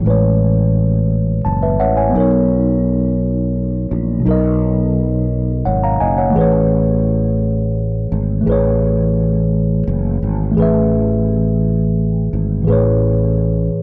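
A dry, gritty recording with the grain of transformer saturation and little reverb puts this short excerpt of slow six-eight R&B close to the ear. The mood is sensual and tender, moving at 57 beats per minute in dotted quarters with a straight feel in A major, tuned a touch below standard pitch. A worn, slightly out-of-tune tine electric piano carries the accompaniment up front, clean and direct across a range from low to high, and slips in a short fill at about 1.1 seconds. Beneath it, a sustaining fretless electric bass sits low and forward, its bright, growly, amped tone colored by analog chorus. The harmony moves from Amaj9 to Bmaj9 at 2.1 seconds and returns to Amaj9 at 6.3 seconds, holding a single unhurried section throughout.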